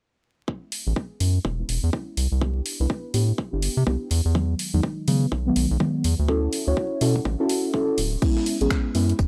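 A dry, gritty hardware recording dusted with vinyl crackle carries this sunny, relaxed deep house excerpt at 124 BPM in A major, swung on the sixteenths, where a dark, detuned chord stab with chorus, phaser, cassette tape color and analog delay pumps through Amaj9, Cmaj9, Emaj9 and Dmaj9 under a filter sweep, a round, mellow bass sweeps and pumps up front beside a layered, punchy kick, an overdriven analog drum machine adds crash cymbal, finger snaps and hi-hat, and a very quiet, pitched-up tambourine and snare enters at 8.2 seconds.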